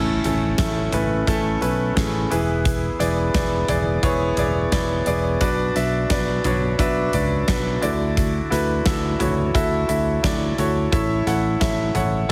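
A clear, up-front concert grand piano carries this uplifting, anthemic piano-driven pop excerpt in A major at 87 BPM, its long sustain and audible action noise giving the accompaniment an intimate feel as the chords move from A through E, Bm and Dadd9 back to A. A huge arena drum kit with a fat snare and punchy kick comes in at 0.2 seconds over a round, fingered electric bass, while a very quiet electronic impact sounds only until 2.7 seconds. The mix sits in light small-room reverb with a heavily compressed radio sound.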